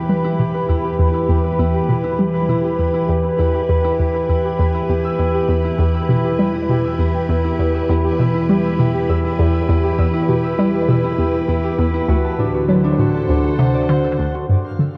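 Mysterious and expansive, this excerpt of sequencer-driven ambient space music moves at 100 BPM in E minor, with an evolving, morphing wavetable pad holding bright, chorused chords up front while a ringing, thumb-plucked Celtic harp spins filtered arpeggios through delay. A hollow, nasal square-wave pluck bounces out a detuned riff with chorus and tape-worn delay, a fat, saturated analog bass sits in the background, and a filter sweep runs until 14.5 seconds as the harmony moves from Em to D7 at 12.1 seconds. A twinkling granular shimmer appears only at 14.7 seconds, all within a lush concert-hall reverb and the warbly pitch drift of old cassette tape.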